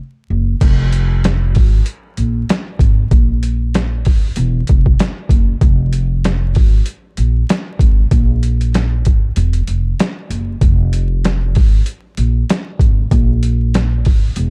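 Reflective and dark, this boom-bap hip-hop cut, taken from a longer piece, moves at 96 BPM in 4/4 with a light 55% swing on the sixteenths, sitting in F minor with tuning at A4 = 438 Hz. An acoustic upright bass opens at 0.3 seconds, plucked pizzicato on steel strings, its woody, thumpy tone held up front in a low range from E1 to Bb1. A sampler-style drum kit joins at 0.6 seconds with kick, snare, hi-hat and crash cymbal, pitched down and compressed into a gritty, tape-warm sound with a thumping kick and a medium-tuned snare, also placed up front. A break arrives between 9.4 and 10.6 seconds before the groove carries on to the end. The dry, dark production, with little reverb and a layer of vinyl crackle, keeps the sound close and intimate.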